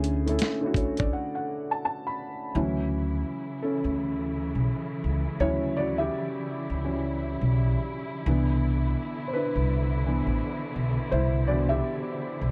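Swung at 84 BPM in 4/4, this cosy, mellow lo-fi hip hop fragment in D major opens with a gritty, overdriven sampler-style drum kit with a thumpy kick that stops at 1.1 s for a break, leaving a woody pizzicato upright bass and a soft, felt-muted upright piano with audible action noise and a boxy, tape-worn tone, which takes a solo from 2.5 s as a bowed string section with expressive vibrato and portamento enters low in the mix, the harmony moving from Dmaj9 to Cmaj9 in a dark, dry production.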